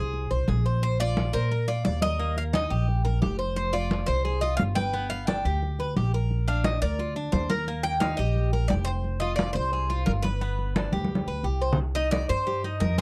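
Latin music in the Cuban son and guajira vein, this short excerpt from a longer piece feels nostalgic yet danceable, moving at a brisk, straight four-beat pulse. Two Cuban tres parts carry the harmony and tune: one plays the melody up front with a bright, metallic ring from its picked double strings, while the other spins arpeggios beneath it in a mellower register, also picked on paired strings with some octave doubling. An upright bass sits close and woody, its pizzicato steel strings anchoring the low end. Congas with thin, damped skins and soft hands add a vintage, band-limited patter, joining just after the start at 0.1 seconds, and a drum fill from 10.9 to 11.8 seconds leads into a return of the opening section. The sound is dry and intimate, like a close 1970s studio recording, as the chords cycle through Ab, Eb, Fm and G before settling on Cm.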